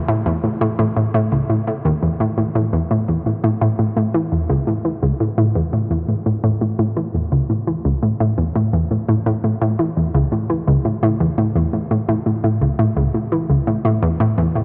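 An analog pluck carries this cosmic, expansive ambient fragment on its own, sounding from 0.1 s to 14.6 s in a low register between C#2 and E3. Its tone is round and slightly nasal, built from detuned sawtooth and square waves with a wave-folded edge and a noise layer, and each note has a fast attack and short decay. Chorus and tape echo thicken the pluck, and it sits bright and up front in the mix. A huge, wet ambient reverb with a long tail surrounds it, and the cassette tape recording adds a worn character. The music moves into a new section at 2.4 s, and the clip is cut from a longer piece.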